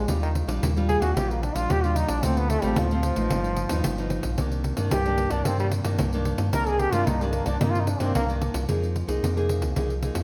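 A straight 4/4 pulse at 112 BPM drives this samba and choro fragment in C minor, with a jingly pandeiro, close and dry under hard hands, entering at 0.1 seconds. The mood is yearning and nostalgic. A bright trombone carries a forceful, jazz-style solo with light vibrato, punchy and up front yet distant and roomy, before falling silent at 8.3 seconds. Beneath it, a fingerpicked nylon-string guitar adds classical, acoustic accompaniment, while a sub bass with an added octave sits deep and full, its sine and triangle tone combining a fast attack with sustained notes. The harmony moves from Ebmaj9 through Dm7 and G7alt to a long Cm9, then shifts to Fm11 as a new section begins at 8.7 seconds. A moderate large-studio reverb gives the track its space, and the clip is cut from a longer piece.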